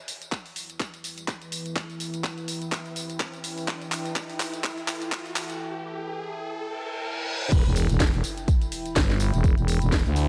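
Bass house at 125 BPM in E minor with a swung 16th feel, this bouncy, aggressive cut builds over a house kit with a cracking snare and a punchy electronic kick while a deep, moody pad with chorus and sidechain pumping sustains an Em chord beneath a riser, filter sweep and reverse cymbal, until the drop at 7.5 seconds brings in a thick, growling FM bass with tube saturation and pumping, up front alongside an electronic impact and sub drop.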